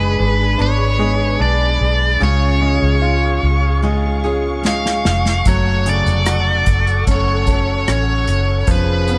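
A longing, emotional pop ballad fragment in a straight 4/4, where a biting, overdriven lead guitar carries the melody up front over a brilliant concert grand piano colored by analog delay, woody picked steel-string acoustic arpeggios and a veiled, con sordino string section sustaining lush chords in the background. A dark, foam-muted fingered electric bass sits round and punchy beneath, and an airy acoustic drum kit played with bundle sticks enters at 4.6 seconds with a fill, its sound built from hi-hat, kick, rim click and snare. The echo-heavy studio ambience frames a progression moving from G#dim through C# to F#m before closing on C#7/E#.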